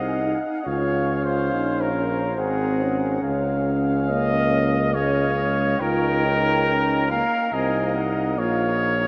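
Triumphant and warm, this classical brass quintet fragment moves at a stately 70 BPM in 3/4 and Db major, set in a vast, echoing space with a huge, wet reverb. Two mellow trumpets carry the melody and a second line, the upper one distant and roomy while the lower sits up front, over a close-miked French horn and a soft-attacked trombone in the background. A smooth-topped tuba anchors the bass up front, with every part shaded by light vibrato as the harmony turns between Db and Ab7 before reaching Bbm at 8.4 seconds.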